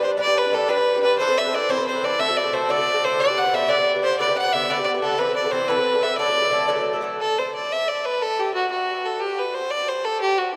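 A long, wet cathedral reverb surrounds this rollicking, bright Celtic folk jig, which sounds as though it was recorded in a church or concert hall and is cut from a longer piece. It moves in 6/8 at 120 BPM, counted in dotted quarters, with a straight feel in D mixolydian. A single bowed fiddle carries the melody up front, its tone clear and focused with a slightly boxy edge and light vibrato. Beneath it, a picked Irish bouzouki supplies accompaniment with the metallic ring of its double strings, moving through G, Amadd9 and D. At 7.2 seconds the bouzouki stops and the harmony drops out, leaving the fiddle to play alone until 10.5 seconds as the hall's reverberation hangs around it.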